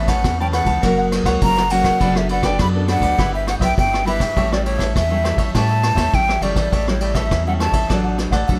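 A breathy, hollow jazz flute opens this sunny, lively samba and choro excerpt at 102 BPM in straight 4/4, carrying the melody between C#5 and B5 with vibrato, a soft attack and lifted highs. Beneath it from the first moment, a bright, crisp picked cavaquinho and a dark, full-bodied fingerpicked nylon-string guitar share the accompaniment, while a rubbery, bouncy square-wave synth bass with a wave-folded, resonant filter pluck and a moving notch holds the low end. A vintage brush drum kit enters at 0.1 seconds, its punchy kick, ride cymbal and rim click sitting up front yet sounding roomy, with a rolled-off top. The harmony travels from Aadd9 through F#, Bm7/F# and Em/G to a long A7, landing on D/A at 7.9 seconds. Light reverb lends the whole a gentle glow across this brief section, which is cut from a longer piece.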